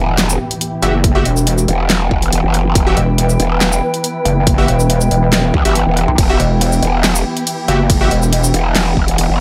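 A dry, up-front mix carries this heavy, menacing half-time wobble dubstep excerpt, opened by a very quiet electronic impact as a growling, formant-filtered growl bass and a saturated, pulsing pluck wobble bass (from 0.8 s) churn low beneath distant, lush bowed strings pumping under a sidechain on an Emadd9 chord. A punchy overdriven electronic kick lands at 1.0 s, joining a dubstep kit already running since 0.2 s with a huge snare, bright hats, handclaps, shaker and crash, while detuned supersaw stabs carry cassette grit and dub echo. A warbling, nostalgic lo-fi pad drifts in at 1.4 s, dark and pumping in the background.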